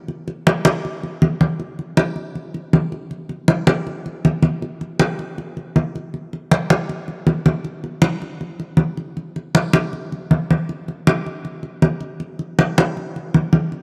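Sunny and lively, this jazz excerpt moves at 158 BPM in a straight 4/4, carried entirely by a lone set of congas that plays from 0.1 to 13.8 seconds. The low-tuned drums sound thick-skinned and damped under soft hands, sitting up front with a vintage, band-limited character. A moderate plate reverb lends the room a lingering sheen as the passage moves from its opening section into a second one at 6.1 seconds.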